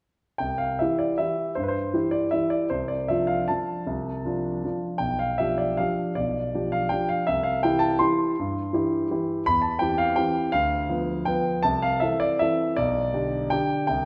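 Elegant and playful, this brief classical piano waltz in C major sways in 3/4 with a rubato feel between 147 and 176 BPM, as a solo concert grand with deep bass and a polished, up-front presence spans B1 to C6 over harmony that moves from C through Dm7/C and G7/B back to C, all set in a moderate scoring-stage reverb with a 1.7-second decay.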